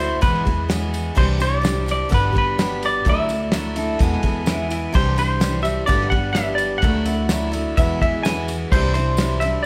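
Folk rock with a heartland rock drive, this short excerpt moves at 127 BPM in a straight 4/4, its hopeful, jangly mood carried by a chord cycle of E, Cadd9, G and Dadd9. A warm, clean semi-hollow electric guitar sits up front with the picked melody, its compressed, hollow-bodied tone riding over a bright, full-bodied steel-string acoustic guitar that picks out the accompaniment on fresh strings. Underneath, a woody pizzicato upright bass anchors the low end while a cloth-damped drum kit enters at 0.2 seconds, thuddy and dry with a fat snare, tight kick and dark, smooth cymbals. A lightly overdriven tonewheel organ holds sustained chords in the background through a stopped rotary speaker, joined by a jingly tambourine tucked close and low in the mix. Briefly, from 3.8 to 4.9 seconds, a dark, clean lap steel guitar slides in with a second line using volume swells, all set in the moderate reverb of a recital hall.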